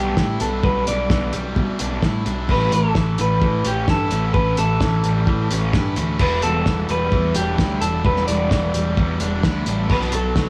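Moody and restless, this short indie rock passage moves in a straight 4/4 pulse, cut from a longer piece. A picked electric guitar through a small old amp carries the melody with a slightly broken-up, lo-fi tone, set in plate reverb. Beneath it, two biting overdriven guitars play riffs, one treated with spring reverb and the other, sitting further in the background, thickened by ensemble chorus. A punchy fuzz bass, bright and overdriven, sits up front alongside a cloth-damped, thuddy drum kit that enters at 0.2 seconds with a fat snare, tight kick, hi-hat and dark, muffled crash cymbals, its sound gritty and rolled-off at the top. The harmony moves from Em7/B to A7, then Em7 at 6.2 seconds and Bm7 near the close, all in a light reverb that keeps the gritty, lo-fi character close and compact.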